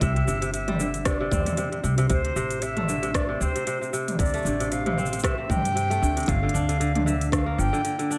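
A crisp, fingerpicked kora plays ringing arpeggios up front with tape echo, joined from the start by an airy, distant silver concert flute melody, also with tape echo, in this delicate, autumnal folktronica excerpt at 115 BPM in D minor, swung on the sixteenths. Beneath them, a woody pizzicato upright bass with tube saturation, a tight electronic kick and an overdriven electronic kit of smooth hi-hat, rim click, shaker and toms move through Cadd9, D7(no3) and Gm7 under light studio reverb. The kick drops out at 7.4 seconds and the bass at 7.7, leaving the flute to ring on until 8.1 seconds and the kora and kit until 8.2.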